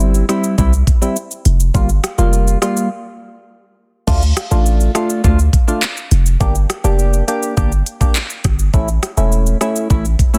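A bouncy, hypnotic dancehall excerpt opens with a hollow, wave-folded organ stab pumping through chorus and phaser over a deep, boomy 808-style bass and an up-front electronic afro-pop kit of knocking kick, smooth hats, handclaps, rim click, shaker and crash, all packed into a dry, dense, heavily limited mix with a break from 2.9 to 4.1 seconds before the groove moves into a new section.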